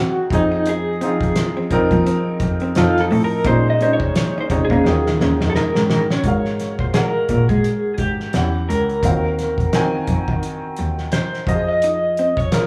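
Swung sixteenths in a 4/4 pulse carry this sultry, late-night R&B and neo-soul fragment, with a cloth-damped, thuddy drum kit giving a fat snare, tight kick and hi-hat from 0.3 s and a drum fill from 4.8 s to 6.2 s. A picked electric guitar through a small old amp sings the lo-fi, slightly broken-up melody with tremolo, taking a solo through the opening section while a dark hollow-body jazz guitar plays a second line in the background until 6.2 s and returns briefly near the end. A woody upright piano with audible action noise and a slightly detuned, intimate tone comps up front, and a bowed cello supplies an earthy, biting bass line, all in the small-room ambience of a band playing live with light reverb.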